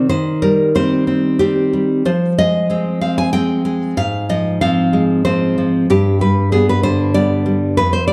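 A fingerpicked nylon-string guitar carries this romantic solo classical piece alone, sounding full-bodied and deep, with finger squeak audible. The mood is intimate and melancholic. It moves at 94 BPM in 3/4 with a free, rubato feel, and the guitar ranges from F2 up to Ab5. The harmony passes through Cm/Eb, Fm, Fm/Ab and then arrives on G at 5.9 seconds. The guitar sits up front in a wet recital hall reverb with a 1.6-second decay, and the production is dark and warm. This short passage is cut from a longer piece.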